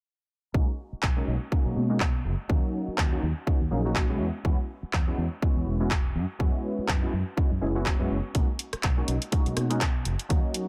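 A lightly reverberant digital ambience frames this feel-good, joyful filtered disco house excerpt at 123 BPM in B major with a swung 16th feel: an up-front, punchy, detuned sawtooth polysynth comp with chorus, phaser and sidechain pumping rides over a warm, foam-muted fingered electric bass, with a filter sweep running from 0.5 s to 10.7 s. A layered electronic kick starts at 0.5 s, and a house kit of handclaps, rim click and bright, pumping hi-hats joins at 1.0 s, over changes from Bmaj13 through D#m7, E69 and F#9sus4.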